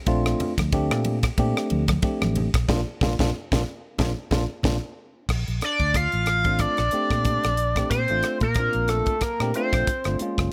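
A swung sixteenth-note groove at 92 BPM in 4/4 drives this short cut from a longer electric jazz fusion piece in Bb major, its mood slick and soaring over a Bbmaj9 opening. A tight funk drum kit sits dry and up front with bright cymbals, a high-tuned snare and a tight kick, moving across hi-hat, ride, rim clicks and crashes, while a round, dark, amped fingered electric bass anchors the low end. A bell-like tine electric piano supplies clean, direct accompaniment, and ringing, medium-tuned congas sit in the background from 0.4 to 4.8 seconds. From 2.7 to 5.3 seconds a drum fill and a band accent mark the turn into the second section. At 5.6 seconds an edgy, tearing sync lead takes the melody up front, its evolving sawtooth and square-wave tone carrying a sub octave, fast attack, vibrato and chorus, all set in light reverb and small room ambience.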